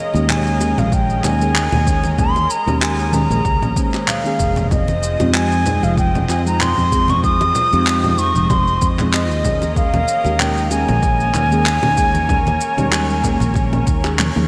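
Sunset chillout with a wistful, smooth mood, cut from a longer piece: a reedy baroque flute with vibrato carries the melody up front through delay, over a lush, airy unison pad with chorus and a soft, round FM electric piano sitting dark in the background with chorus and phaser. A direct fretless electric bass holds the low end beneath very quiet, dry bongos and congas played with hard hands, while a layered deep house drum kit with congas, handclaps, shaker and toms and an overdriven electronic kick drum, entering at 0.9 seconds, give a light swing. The bright 1980s-style digital production sits in a moderate hall reverb, and a drum fill lands at 14.2 seconds.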